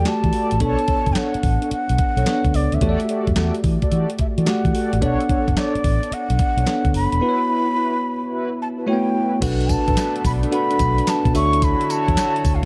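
A breathy, mellow bansuri carries the melody from the opening moment, sitting up front over a bell-like tine electric piano and a round, punchy muted electric bass in this confident, bouncy new jack swing cut in B minor at 109 BPM, with a swung sixteenth-note feel of 67%. A crisp 8-bit digital drum machine comes in at 0.1 seconds, also up front, with a thumpy kick, medium-tuned snare, hi-hat, handclaps, tambourine and crash cymbal carrying a tape-warm, sampler-style character. Mellow synth brass adds stabs in the background, its detuned sawtooth tone thickened by chorus and vibrato. The harmony moves between Em11 and Bm9 before a F#7sus4, then shifts to Bm7 and Dmaj9 at 9.4 seconds, where a shimmering, retro pulse-width pad enters with slow-attack sustained chords. Light reverb and a dark, warm production round out this excerpt from a longer piece.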